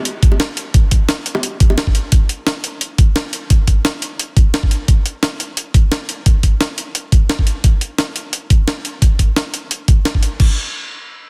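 A dense, heavily limited master in a small room frames this uplifting liquid drum and bass fragment, cut from a longer piece and swung lightly on the sixteenths. Up front, a gritty, pitched-up, tape-warm jungle sampler kit with crash, hi-hat and a medium-tuned snare sits alongside a knocking, layered electronic kick. Round, low-tuned acoustic bongos struck with hard hands appear only briefly, from 0.3 to 1.8 seconds.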